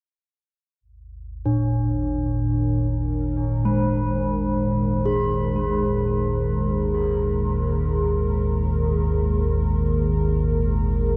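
Unsettling and ominous, this dark ambient drone moves at a slow 48 BPM in a straight 4/4 and is tuned slightly flat to A4 = 436 Hz, in a passage cut from a longer piece. A sweeping, resonant synth pad fades in at 0.8 seconds on a G#sus2 chord; its detuned sawtooth and sine layers with a sub octave, a filter swell and chorus give it an evolving, full-bodied sustain. At 1.1 seconds a deep, rumbling drone settles in far below, sitting up front with a warbling, vintage, wave-folded character and its own built-in reverb plus a touch of chorus. From 1.5 seconds a bronze singing bowl plays ringing, meditative arpeggios, struck with a wooden striker; it has a metallic tone with slow beating and a boxy small-room quality, and is fed through analog delay. The whole mix is soaked in a cathedral reverb with a 5.6-second tail, leaving a dreamy yet shadowy wash.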